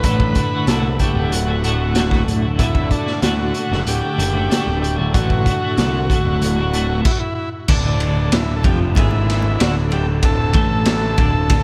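A straight, steady 4/4 pulse drives this trippy, kaleidoscopic psychedelic rock excerpt, carried by a raw garage drum kit that sits up front with a punchy kick, gritty saturation, dark cymbals and a pumping small-room sound. Beneath it, a fuzz-drenched picked bass rumbles round and overdriven, while a bright, twangy twelve-string electric guitar plays a double-tracked riff shimmering with tremolo. A buzzy vintage combo organ carries the melody with light vibrato and delay, and a very quiet tonewheel organ holds fat sustained chords through a slow rotary speaker, its key click just audible. The whole band drops out for a stop from 7.0 to 7.7 seconds, then returns on a D5 chord to open a new section. Very quiet, close and dry high-tuned congas join at 8.6 seconds, all set in a dreamy mix soaked in lush hall reverb.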